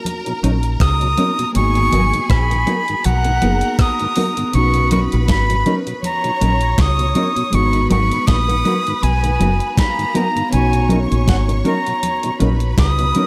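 Lovers rock reggae at 80 BPM with a bittersweet, longing mood, where a breathy, chiffy jazz flute carries the melody up front from 0.8 seconds over a deep, foam-muted dub bass, a thumpy 8-bit drum machine with fat snare and rim click, very quiet high-tuned congas, dark clean electric guitar stabs, a soft FM electric piano and a slow-rotary tonewheel organ in the background, and a lush bowed string section with tape echo as the second line, all moving between Bmaj9 and G#m9 in light digital ambience.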